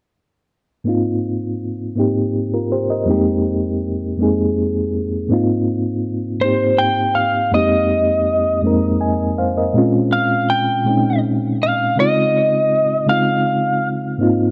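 Sensual and tender, this slow R&B excerpt in 6/8 at 54 BPM in Ab major sets a reedy, mellow electric piano with fast tremolo, heard through its built-in speakers, on chords such as Ab69, Fm11 and Dbmaj9 from 0.8 seconds, while a slightly broken-up, compressed lead guitar carries a picked melody from 6.4 to 13.9 seconds, both up front in a dark production with a moderate plate reverb.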